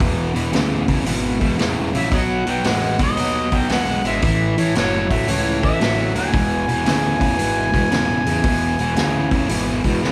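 A swung 4/4 groove drives this raunchy blues rock and southern rock power-trio cut, where a punchy vintage drum kit with a rolled-off top and a fuzzy, overdriven picked bass back a bright, double-tracked distorted guitar riff up front, while from 2.0 s a mellow, distant harmonica solo with overdrive, tongue slaps and scooped notes floats through a large, live-sounding studio room over chords moving from E to B to A and back to E.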